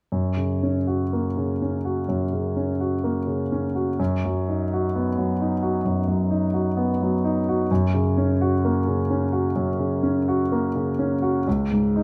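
Lyrical and passionate, this romantic character piece for solo piano unfolds at 63 BPM in 4/4, its beats stretched and pulled by a free rubato in F# major. A warm concert grand plays throughout, from 0.1 to 12.0 s, staying between C#2 and F#4, with deep bass, long sustain and a natural, intimate tone. Close, detailed microphones place the instrument up front, so the noise of its action is audible beneath the notes. The harmony moves from F# to B over an F# bass at 4.0 s, returns to F#, then comes to rest on an open C#sus2 near the end. A moderate recital hall reverb with a 1.6-second decay gives the sound a gentle bloom, and the passage is cut from a longer piece.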